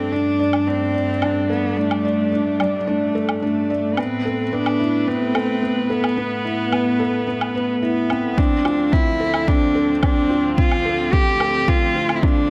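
A dark, bowed cello carries the melody from the opening, up front and boxy with smooth, even vibrato, while a distant studio string section holds floating, soft-attacked chords that pump under sidechain compression and a felt-muted upright piano repeats a mellow, intimate riff through a digital delay, its thick felt and audible action noise close at hand. This excerpt of piano and strings electronica in D dorian moves at 109 BPM in a straight 4/4, cinematic and hypnotic in mood. A layered, produced woodblock ticks in at 0.5 seconds, and the harmony shifts from Gsus2 to Amadd9 before settling on Dm7. At 8.4 seconds a deep electronic kick drum arrives up front to drive a build-up through the closing section. The whole sits in a moderate echo chamber reverb with a small room ambience.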